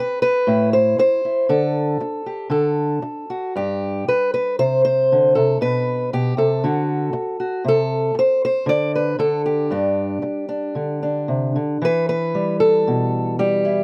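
A fingerpicked acoustic archtop guitar carries this short folk passage by itself, its dark tone sitting up front throughout the 13.8 seconds. The mood is nostalgic and pastoral, and the rubato feel lets the phrasing breathe freely over a 4/4 frame. The harmony wanders through Am, Dsus4 and D before settling on G5, then colours the line with Csus2 and Am9/B. A pause in the chords near 7.7 seconds gives way to a return to G5, and a brief new section begins at 11.8 seconds on Em. Close, detailed microphones and very little reverb keep the guitar intimate and dry, and the clip is taken from a longer piece.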